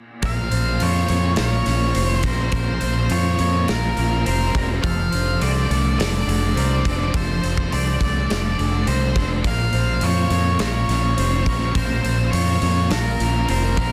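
Opening at 0.2 seconds on a gated, big-room 80s drum kit with a tight kick and a medium-tuned snare with soft clipping, this wistful, blissful shoegaze and dream pop piece stacks a dark, compressed overdriven guitar riff with reverse reverb, a thick fuzz guitar riff with analog chorus in the background, bright, twangy, clean arpeggios set back in the mix with lush chorus and analog delay, and a growling, up-front fingered bass with overdrive, before a warm octave-fuzz lead melody with distortion and analog delay joins at 0.3 seconds, over chords moving from Bbmadd9 to F6 and back inside a dense, heavily limited, reverb-soaked mix.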